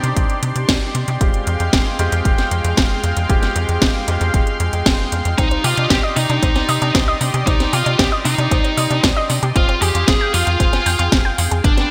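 A punchy electronic kick drum and a house kit with a cracking snare and metallic hats drive this straight 4/4 italo disco excerpt at 115 BPM, over a tight, driving sequencer bass and a thick, warbling unison pad with chorus and vintage sampler grit holding sustained Cmadd9 and Fmadd9 chords. An intimate concert grand piano adds delayed stabs until 5.4 seconds, when a dark, high-gain lead guitar with distortion and delay takes the melody and a round, nasal analog pluck spins chorused, delayed arpeggios. The mood is melodramatic and nostalgic, set in a lush hall reverb with bright 1980s-style digital production.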